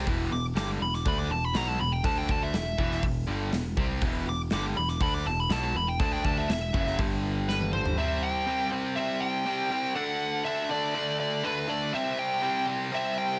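A light reverb hangs over this aggressive, heavy hard rock excerpt in E minor at 121 BPM, where a cranked, double-tracked stack guitar with bright overdrive drives the riff up front, a growly, punchy picked electric bass sits underneath, and a big acoustic kit with a medium-tuned snare and punchy kick fills a large room. A dark, smooth lead guitar, overdriven and washed in plate reverb, solos over the opening chords before a drum fill at 7.5 seconds. At 8.0 seconds the bass and drums drop out, leaving the two guitars to carry the C5, D and C5 changes to the end.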